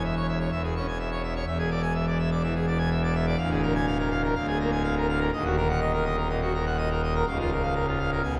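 In a straight 4/4 at 124 BPM, this majestic, stormy excerpt from a classical organ toccata gives the solo pipe organ, played on full organ with brilliant mixtures and a romantic voicing, an up-front place spanning Db1 to G#5, its chords moving from C#m/E through E7, Bb7/D and Ebm to Bbm/Db within 8.4 seconds as a 3.4-second church reverb lingers around every sound.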